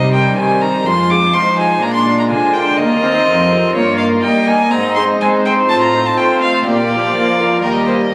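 Festive and lively, this short cut from a baroque-style concerto movement in Eb major moves at 124 BPM in a straight 4/4, with a close, reedy solo violin riding up front over a chamber violin section on the melody, warmer second violins, dark violas and cellos in period gut-string tone, and a brilliant, delicate fingerpicked lute in the background, all set in a recital-hall reverb captured by a phone in the room.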